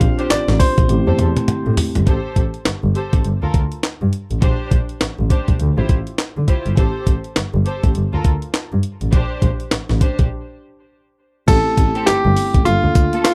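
New jack swing R&B with a confident, punchy stance, this short cut from a longer piece rides a swung 102 BPM groove in 4/4 over lush jazz-tinged chords such as Bb69, Am7, Gm9 and Dm11. A compressed, gritty breakbeat-style drum kit sits up front, its thumpy kick and high-tuned snare joined by hi-hat, handclaps, tambourine, crash and toms, with a drum fill near the top and a break at 10.3 seconds. Underneath, a bowed double bass carries the low end from the start until 13.0 seconds, played with vibrato, soft attacks and expressive portamento. A clear, polished baby grand piano states the melody only in the opening bars and again from 11.5 seconds, accompanied by a mellow tine electric piano heard through its built-in speakers. Muted strings, dark and veiled under their mutes, add smooth ensemble stabs low in the mix throughout, and the whole recording has the dry, close feel of a 1970s studio.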